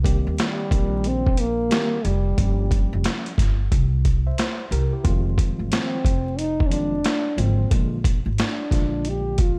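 A layer of vinyl crackle sits over this cool, relaxed jazz-hop excerpt, which runs 9.6 seconds at 90 BPM in 4/4 with a swung sixteenth-note feel. A boom bap sampler-style drum kit, pitched down, compressed and gritty, sits up front with a thumpy kick, a high-tuned snare and hi-hat, re-recorded in a large room. Underneath, a woody pizzicato upright bass with steel strings carries the low end. A worn, slightly out-of-tune tine electric piano, lightly overdriven and heard through its built-in speakers, sits back in the mix as accompaniment. From 0.4 seconds a dark French horn takes the melody up front, its soft attack and smooth top played in a classical style with a slapback echo. The harmony moves from Cm7 through Gm7b5 and C7 to Fm7 and Bb7.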